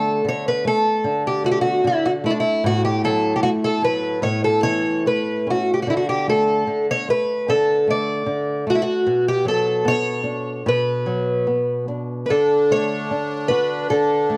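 A rubato 2/4 pulse at 75 BPM carries this longing, passionate fado-style ballad in D major, where a shimmering, octave-doubled fingerpicked twelve-string acoustic guitar with fresh strings and audible finger squeak sings the melody up front over a fingerpicked flamenco guitar accompaniment, joined at 12.3 seconds by a reedy accordion second line with slow beating, all set in a moderate echo-chamber reverb with studio ambience.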